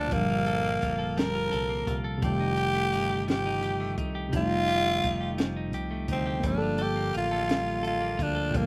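A raspy, gritty tenor saxophone carries the melody up front, close-miked and punchy, with vibrato and a slapback echo trailing its phrases. This short excerpt of slow R&B in six-eight has a sultry, late-night mood, moving from Gm9 to F9 at 2.2 seconds and back to Gm9 at 6.4 seconds. Beneath the horn, a worn, slightly out-of-tune tine electric piano supplies the accompaniment, while a clean, picked and compressed electric guitar plays a second line with a warbly pitch drift. A deep dub bass, fingered and round, sits low and dark. A compact cocktail drum kit joins at 0.1 seconds with hi-hat, a high-tuned snare and a punchy kick, its top end rolled off. The sound is dry and close, recorded outdoors with little reverb.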